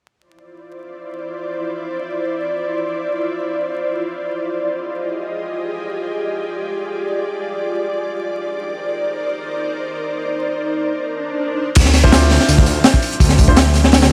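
This excerpt of dark, frenetic drum and bass with a jungle edge opens in free time on an ethereal, airy pad holding sustained chords, its slow-attack, detuned tones thickened by ensemble chorus and built-in reverb as the harmony drifts from Dm9 through Fm9 and Cm9. A very quiet electronic swell and downlifter enters beneath it from 11.2 seconds, setting up the drop at 11.8 seconds, where the chords return to Dm9. There a menacing detuned saw bass arrives on a low D, thick and beating with a fast attack and saturation, alongside an up-front crunchy breakbeat kit with a punchy kick, high-tuned snare, dark cymbals and a gritty, rolled-off top. A second, filtered layer of hi-hat, snare and tambourine sits in the background, and from 12.0 seconds a smooth, vintage grand piano adds stabs trailed by dub echo. Light reverb, a small room ambience and vinyl crackle give the short passage a worn, shadowy patina.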